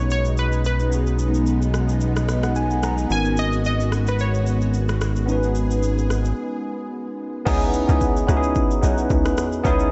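Swung 16ths at 110 BPM in 4/4 drive this hypnotic, late-night amapiano passage in C# dorian, where a punchy, layered deep house kit of kick, rim click, shaker and crash backs an up-front, clean tine electric piano with analog chorus and a fill at 2.0 seconds, a round, detuned analog pluck melody with chorus and delay, phased vintage string machine violas pumping under sidechain, and a fat sawtooth analog bass that gives way after a break at 6.4 seconds to a tight, percussive FM log drum bass at the drop at 7.5 seconds, the whole mix soaked in dreamy plate reverb with softened highs.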